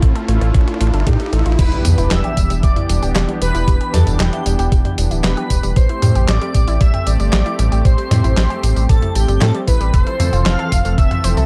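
This nocturnal, driving synthwave excerpt opens with a drum fill from a clean 12-bit drum machine and a thumpy electronic kick, while a background riser and a filter sweep play over a nasal, wave-folded analog pluck arpeggio with chorus, tape character and delay. Beneath sit a round, deep analog bass up front and a smooth, detuned pad whose sustained chords pump with sidechain, tremolo and chorus. At 1.1 seconds a brassy synth brass melody with vibrato and delay enters, and at 1.6 seconds an impact lands as an airy, dreamy lead with phaser joins high in the background, the chords moving through Em7, Am7 and Fmaj7 in a dark production with light reverb and drums re-recorded in a large room.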